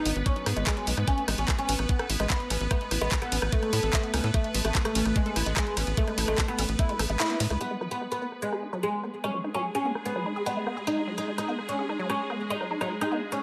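Psychedelic trance at 147 BPM in G# phrygian, driving and heady, with an up-front plectrum-plucked fretless oud carrying the melody through phaser and delay over a swarming, detuned drone, a woody wave-folded chorused pluck riff, a tight sawtooth sequencer bass with tube saturation, a knocking electronic kick and a layered drum kit of handclaps, hi-hat, ride and rim click. The oud, drone and pluck pump through the drop until the kick drops out at 7.2 s and the bass stops at 7.6 s for a filter sweep on the synth arpeggio, and a barely audible reverse cymbal closes the cut at 13.3 s.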